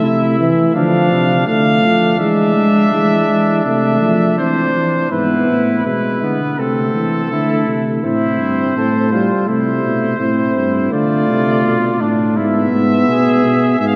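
Classical imitative canzona for brass ensemble, lively yet stately at 83 BPM in a straight 4/4, with chords moving through Am/C, Dm and E before a new section begins at 5.1 s. A bright, distant trumpet carries the melody, a warm second trumpet plays beneath it, a smooth-topped euphonium fills the accompaniment, and a mellow tuba holds the bass, each part voiced in classical style with vibrato, light in the trumpets and tuba. The excerpt sits in a wet cathedral reverb with a long 5.0 s decay, giving the dark, warm production a spacious glow.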